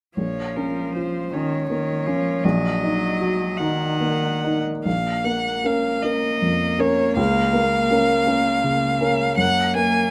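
Closely miked and detailed with a light reverb, this melancholic, elegiac slow romantic movement for piano trio in Bb minor, cut from a longer piece, unfolds in a rubato 6/8 at about 44-55 BPM in dotted quarters, with a warm, smooth, up-front bowed violin carrying the melody with vibrato, a rich, close cello singing a second line beneath it, and a dark, mellow baby grand piano supplying the accompaniment as the harmony moves from Bbm through Ebm/Bb to Gb at 9.4 seconds.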